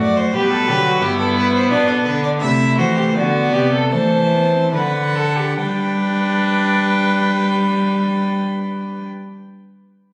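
Stately and elegant, this baroque-style fugue for string quartet moves in a straight triple metre. The first violin carries the melody with a rich, close tone, while the second violin plays a darker, nasal second line from a more distant position. Beneath them the viola supplies a smooth-topped accompaniment, and the cello anchors the bass up front with a shadowy sound and light vibrato. Each part is a single bowed player with period-style gut strings and a reedy edge, and the tempo slows through the opening section until the second section begins on a G chord at 5.6 seconds. The sound was captured on a phone in the room, with moderate scoring-stage reverb, a club-like ambience and compression.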